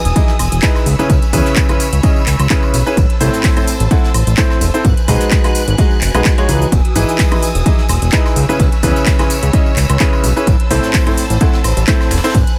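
Joyful and euphoric, this excerpt of piano house moves at 128 BPM in 4/4 with a light 16th-note swing, as a brilliant, woody upright piano riff with delay and an up-front fat, saturated sawtooth bass carry the Emaj7, C#m7, Am and G#m7 changes, both pumping against a dry, punchy electronic kick. Overdriven house drums with metallic hats, handclaps, shaker and woodblock are joined by a background tambourine and a very quiet brushed kit of hi-hat, ride and snare. A lush, bowed symphonic string section holds vibrato chords over an ethereal, chorused pad, while a barely audible sub drop lands an impact in the opening 1.1 seconds of a dry mix.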